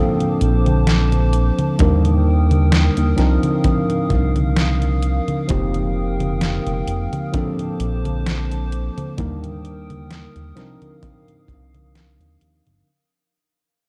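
Vaporwave with a nostalgic, woozy swing, this excerpt from a longer piece pairs a clean tine electric piano, touched with subtle chorus and analog delay, against a detuned, slow-blooming tape-like pad and a glossy, up-front chorused synth bass, while an overdriven, detuned 8-bit drum machine with gated reverb on congas, hi-hat and snare is joined by a dark, punchy acoustic kick from 1.8 seconds, all cycling through Bbmaj9, Ebmaj7, Cm11 and F9sus4 on a dry cassette recording that fades out from 3.0 seconds.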